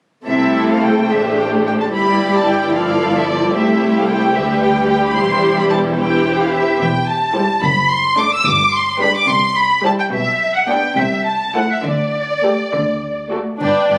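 Captured on a phone in a recital hall with roomy reverb, an added club-like reverb and compression, this graceful, cheerful classical-period string orchestra fragment in C major moves in a rubato 6/8 at 73 BPM, with the up-front violin section carrying a lush, expressive melody full of vibrato and portamento over a close second violin line, distant violas filling in the accompaniment, a clear, smooth cello section and a warm double bass section together anchoring the bass as the harmony moves from C through G and D/F# to a suspended D chord that resolves to D near 12.7 seconds.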